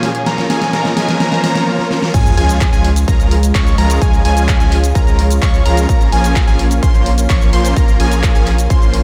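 Euphoric and uplifting, this festival progressive house excerpt at 128 BPM in Db major opens on a build-up with a drum fill from the big-room kit, a faint riser and sub drop, a lush, phaser-tinged background pad, a catchy plucky arpeggio lead with diffuse delay, and a huge detuned supersaw riff with cassette-tape color, before the drop hits at 2.1 seconds with a punchy up-front kick and a deep saturated sub bass pumping under the sidechain as the kit's huge snare and crash drive on, all in a dreamy mix soaked in hall reverb as the chords move from Bbm to Db and back to Bbm.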